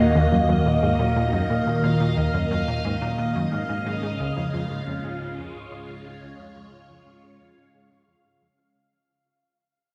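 A bright, swirling phased string machine holds sustained chords up front while a punchy, funky analog bass riff and a mellow, warbling drone sit beneath, moving from Ebm to Db at 3.5 seconds in this cosmic, expansive ambient fragment at 89 BPM. High above, a resonant stepped-filter texture bubbles on a single F5, washed in shimmer reverb like the strings. The dark production sits in a concert-hall reverb, and the whole fragment fades out across its 8.9 seconds.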